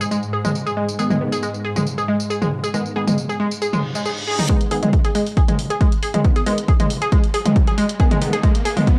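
Lo-fi home cassette recording colors this hypnotic, industrial peak-time techno excerpt at 137 BPM in G# minor, where a bright, detuned analog pluck riff with overdrive and tape echo pumps up front over a swarming, tense drone that drops out at 4.5 s, aggressive thick rave stabs with filter sweeps, a punchy analog drum machine of hi-hat, tambourine and toms re-recorded in a large room, background downlifter, reverse cymbal and riser effects, and a layered electronic kick that enters at 4.5 s to drive a build-up ending in a drum fill at 8.0 s.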